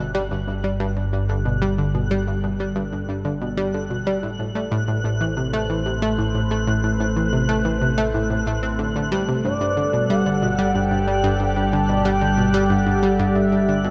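A bright, up-front analog pluck with a round, wave-folded tone drives this excerpt of ambient, sequencer-driven space music, its riff carried on chorus and delay at 92 BPM in G major, moving from Gsus2 to Amadd9 at 4.2 seconds and back at 9.4 seconds. Around it, a swirling phased pad fades in with sustained chords, an evolving analog drone holds the bass, and a twinkling granular texture adds sparkling octave-up shimmer high above. At 9.4 seconds an expressive, smooth synth lead with vibrato enters with the melody, and the whole mix is soaked in cathedral reverb for an expansive, cosmic, dreamy feel.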